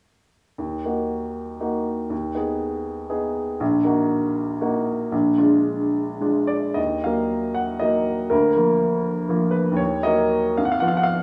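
Classical romantic character piece for solo upright piano, brooding and bittersweet in 6/8 with rubato, its woody, polished tone sitting present and up front over a large, wet studio reverb, the piano playing alone from 0.6 to 11.2 seconds in this short section cut from a longer work, moving through Eb minor harmonies and closing on a diminished chord.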